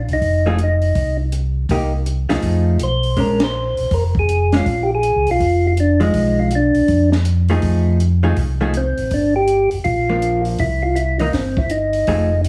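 A clean, percussive tonewheel organ carries the melody through a slow rotary speaker, with a rounder, lightly overdriven tonewheel organ beneath it playing the bass line with chorus vibrato and the same slow rotary swirl. A hollow-body jazz guitar adds picked, compressed accompaniment up front, while a compact cocktail drum kit with a high-tuned snare, tight kick, hi-hat and ride cymbal sits further back with a dark, rolled-off top, and the whole band hits an accent at 3.4 seconds. This soulful, swinging soul jazz organ trio passage is cut from a longer piece, and it moves through bluesy seventh and minor-seventh chords in a small room with light reverb and a heavily compressed, radio-like sound.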